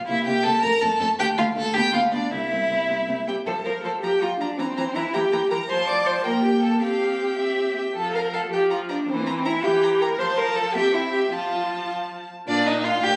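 A warm, expressive cello with vibrato and portamento anchors this cheerful, spirited classical-period movement for string quartet in 6/8, beneath a dark, intimate first violin carrying the melody sul tasto with light vibrato and a soft attack, a second violin adding its line with portamento, and a smooth, even viola accompaniment, all captured on a phone in a reverberant, club-like room.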